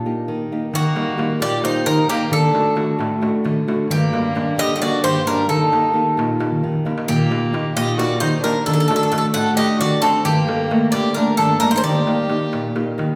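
A bright, metallic Greek bouzouki and a fingerpicked nylon-string guitar open this intense, driving Greek folk band piece together at 0.0 seconds, both placed up front. The bouzouki carries the melody on picked double strings, some of them octave-doubled, while the small, warm guitar supplies the accompaniment underneath. At 0.7 seconds a single bowed violin joins on a second line with a reedy, gut-string tone in period style, heard close, and a crisp, high metal-shell darbuka enters with a vintage, band-limited sound. The music moves at 264 BPM counted in eighths across a straight 7/8 metre, and a drum fill comes from 6.5 to 7.1 seconds. Chords cycle through Eb, D and Gm, with a Gmadd9 near the end, and the whole band sits in a wet recital hall reverb that gives the feel of a church or concert hall. The clip is cut from a longer piece.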